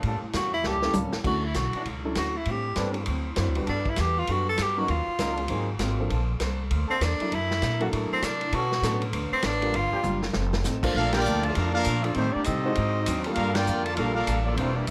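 A brisk swing at 198 BPM drives this joyful, brassy big band excerpt, with a vintage drum kit's dark cymbals and punchy kick, a woody, growly upright bass up front, a picked acoustic guitar and a mellow trombone section in the background, and a concert grand piano with deep bass entering at 0.8 seconds. A clear tenor saxophone with light vibrato carries the melody as a solo until 10.2 seconds, framed by drum fills. At 11.0 seconds the music settles into Bb major as a tight trumpet section with a smooth top takes the lead over a second trombone section's line, punctuated by band accents, all in light reverb with close, detailed sound.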